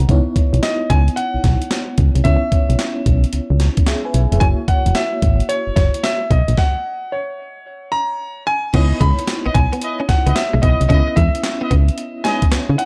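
A confident, bouncy new jack swing groove opens with gritty, thumpy sampler-style breakbeat drums, a punchy, round FM bass and a mellow tremolo FM electric piano, while a clear, polished baby grand piano carries the melody from 0.6 seconds, and after a stop that ends at 8.7 seconds a twangy, bright clean electric guitar riff with ensemble chorus and vintage horn stabs join in against a dark, warm digital ambience.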